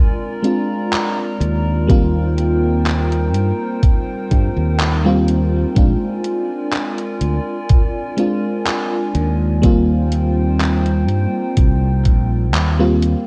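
A lush, detuned FM electric piano with a soft pad layer sits up front, its mellow, fast-attack, decaying chords carrying subtle chorus and tape echo through this faded, dreamy vaporwave fragment cut from a longer piece. Beneath it, a warbling tape-like pad holds dark, nostalgic sustained chords with slow attack, long release, chorus and its own built-in reverb. A detuned 8-bit drum machine supplies sampler-style handclaps and hi-hat soaked in studio and gated reverb, while a bright, growly fingered electric bass joins at 1.4 seconds and a thumpy, tape-warm electronic kick re-recorded in a large room arrives up front at 1.9 seconds. At a languid 62 BPM in 4/4 with a light swing on the sixteenths, the harmony in Eb major drifts back and forth between Bb7 and Eb6. The whole track has a cassette-tape character with light reverb, giving it a hazy, lo-fi glow.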